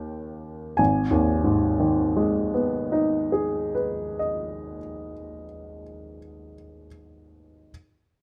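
The rhythm moves in a slow 4/4 at about 52 BPM, stretched and pulled by rubato. This short romantic character piece for solo piano in G# minor is passionate and brooding. A baby grand piano, clear and natural with short sustain, sits up front and spans G#1 to G#5. The fragment opens on a D#7 chord, which resolves to G# minor at 0.8 seconds as a brief section begins and runs to 5.4 seconds. Close, detailed microphones and light reverb frame this brief cut from a longer piece, which ends at 7.7 seconds.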